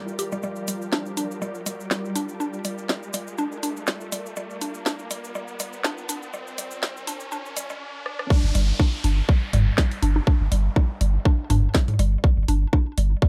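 Hypnotic and quirky, this swung minimal techno passage, cut from a longer piece, builds under a filter-swept rise as a woody, round, mallet-like synth pluck riff with chorus and delay, an ethereal, warbling pad, a grainy cabasa, a garage drum kit with a cracking snare and a riser and downlifter in dark production all play together; the pad and cabasa stop at 7.8 s, a drum fill lands at 8.1 s, and the drop at 8.3 s brings in an overdriven, tight electronic kick drum, a deep, punchy sine sub bass with sidechain pumping and tape-warm electronic bongos and toms in the background.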